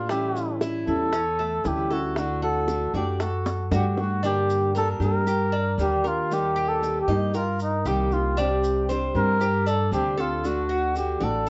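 A cup-muted trumpet carries a soft, veiled jazz melody up front, with light vibrato, slapback echo and plate reverb, in this nostalgic Cuban son and guajira excerpt in G minor at 116 BPM. A bright, fingerpicked nylon-string guitar and the metallic, double-strung arpeggios of a Cuban tres sit over a woody, thumpy pizzicato upright bass, while tight, high-tuned bongos play until 4.1 s with a drum fill from 3.5 s, and grainy maracas stay in the background. The recording has the worn, warbling pitch drift of old cassette tape, with dulled highs and a moderate studio room.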